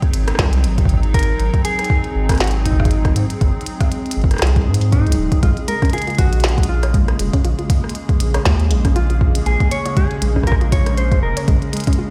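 Cerebral and glitchy, this IDM excerpt rides a swung 4/4 groove where an overdriven electronic kick and a glitchy kit of tiny snare, rim click and clicky hats sit under a deep, round analog bass warmed by tube saturation and placed up front. A hollow, flute-like pad warbles through sustained chords from Ab7 to Bbm7, while a dark, clean, fingered electric guitar carries the melody from 1.1 seconds through a dub echo. At 5.4 seconds a soft pluck enters in the background with arpeggios roughened by vintage 12-bit sampler grit and tape echo, and the whole mix sounds as if played on a big sound system in a bare stone room.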